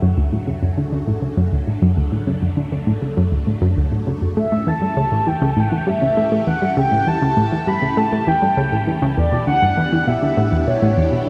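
Ambient music at a straight 4/4, mysterious and expansive, where a round, up-front analog pluck riff with sub-octave weight and tape echo runs throughout above a swirling, vintage string machine fading in with ensemble chorus and phaser, joined at 4.4 s by a warbling, horn-like synth lead melody with vibrato, lush chorus and tape echo, as the harmony moves from Dmaj7 to A7 to Em7 inside a huge, dark reverb, in this section cut from a longer piece.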